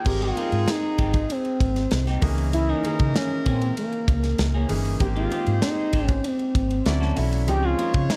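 A straight 4/4 groove at 97 BPM drives this upbeat, urban slice of polished 1980s jazz-funk pop in Ab major, with a modern studio kit of bright cymbals, medium-tuned snare and punchy kick sitting up front beside a round, dark hollow-body fingered bass, while very quiet high-tuned congas ring underneath. An expressive synth lead carries the melody with a smooth sawtooth-and-triangle tone, chorus, vibrato and a filter sweep, backed by a clear concert grand piano, a jazz-style horn section with a smooth top, and a clean picked semi-hollow guitar riff tucked in the background. The harmony moves from Abmaj7 to Dbm6 and back before a late shift through Dmaj7 to Dbmaj7, all wrapped in a dark, warm small-room production tuned slightly flat to A4 = 436 Hz.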